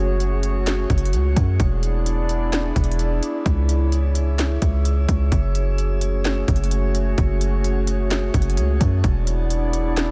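Spacious and hazy, this atmospheric cloud-rap clip from a longer hip hop piece moves with a half-time feel as a warbly, nostalgic lo-fi pad sustains dark, detuned chords through chorus, its own reverb and sidechain pumping, cycling F#madd9, E7 and C#m. Underneath, a deep, boomy 808-style bass with a noise layer sits up front alongside an electronic trap kit that enters at 0.2 s with a hard-clipped kick, sharp snare and crisp hi-hats. The overall sound is dry and close, leaving the pad's blur to supply the sense of space.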